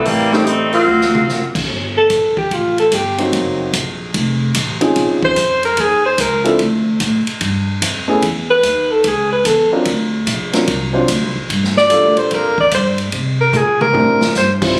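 Big band swing at 147 BPM, joyful and energetic, opens with a clear saxophone section stating the melody over a woody, growly pizzicato upright bass and a swinging drum kit with a punchy kick that plays a fill near 0.9 seconds. A breathy, subtoned alto saxophone then takes a vibrato-laden solo from 2.0 seconds, while a warm upright piano, after a brief touch near 0.3 seconds, comps from 3.2 seconds through altered and extended chords. It is all set in a roomy hall reverb with a phone-in-the-room, compressed sound, cut from a longer piece.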